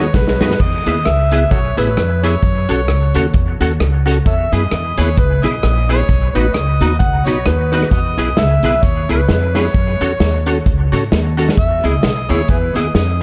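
Ska excerpt at 131 BPM with a swung, bouncy, upbeat feel, where a gritty, overdriven harmonica with dub echo carries the melody over bright, clean semi-hollow electric guitar with chorus and echo, flute-like tonewheel organ stabs through a fast rotary speaker, woody pizzicato upright bass up front, and a punchy vintage drum kit with dark cymbals that opens with a short fill, all moving through B, E and F#m in a dark, warm production.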